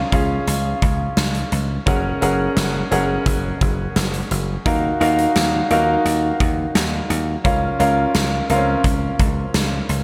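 A clear concert grand piano and a dry, thumbed slap bass open this nostalgic, glossy fragment of 1980s-style pop at the very start, with a huge arena drum kit joining at 0.1 seconds. The piano carries the accompaniment with a polished, present tone, deep low end and short sustain, moving through chords of C#, F#add9, D#madd9 and A#m/C#. Beneath it, the electric slap bass sounds brilliant, punchy and foam-muted, sitting direct and up front in a low register. The acoustic drums bring hi-hat, a medium-tuned snare and a boomy kick with a natural, big-room character. A wet cathedral reverb soaks the whole mix in a dreamy haze, and all three parts hold together until the clip is cut at 10.0 seconds.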